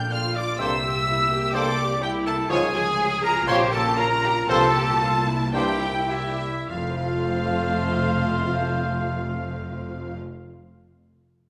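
Urgent and dramatic, this romantic symphonic fragment, cut from a longer piece, sets a rich, vibrato-laden violin section on the melody over bright bowed double basses and expressive cellos, while a background viola section accompanies, a ringing concert harp plays arpeggios, and a clear oboe, a distant clarinet, an airy flute section and a very quiet studio violin section with portamento trace second lines; dark trombones, mellow French horns and soft-attacked trumpet stabs enter at 0.6 seconds, and the music slows from 1.5 to 6.7 seconds within a wet scoring-stage reverb.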